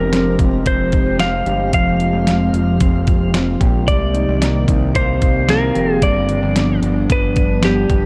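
A hazy, ethereal dream pop excerpt at 112 BPM in 4/4 features a clean lap steel guitar, played with fingerpicks and slide, carrying the melody between G4 and F5 through delay and shimmer reverb. Beneath it, a warbling, nostalgic tape-like pad holds sustained chords with slow attack and long release, its detuned, wave-folded tones softened by chorus and shimmer reverb, while a mellow, fingered electric guitar sits in the background with arpeggios coloured by subtle chorus and delay. A fat, sawtooth analog bass with a filter sweep anchors the low end, and an up-front, detuned 8-bit drum machine supplies a thumpy kick, medium-tuned snare and hi-hat. From 3.9 s to 6.2 s, a faint metallic vibraphone with medium hard mallets and motor vibrato rings in the background. The harmony moves from Fmadd9 to Cm7 at 3.9 s and G7 at 6.0 s, all within a dark production with light reverb.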